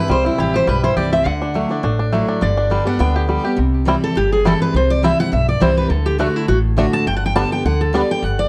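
A bright, up-front dreadnought guitar carries the picked melody through this rustic, virtuosic bluegrass excerpt at 207 BPM, its swung eighths riding over a full-bodied jumbo guitar picking an accompaniment through C, Dadd9 and G changes. A mellow, twangy banjo played with fingerpicks adds percussive arpeggios, coloured by plate reverb and tape echo, until it drops out at 8.0 seconds, while a woody, thumpy gut-string upright bass plays pizzicato underneath. The moderate studio room and cassette tape give the whole cut a homespun, slightly worn sound.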